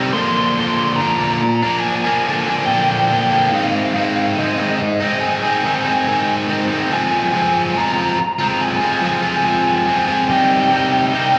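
A straight 4/4 pulse at a slow 71 BPM carries this brooding, melancholic rock fragment in F dorian, where a bright, overdriven, double-tracked distorted electric guitar sits up front with a picked riff from Ab2 to F4 under slapback echo, while a second electric guitar through a small old amp, slightly broken-up, lo-fi and compressed, enters at 0.1 seconds with a picked melody between Eb5 and C6 wrapped in slapback and tape echo, both moving through Bb7, Ab, Fm and Cm inside a wet recital-hall reverb that gives the short cut a big arena sound.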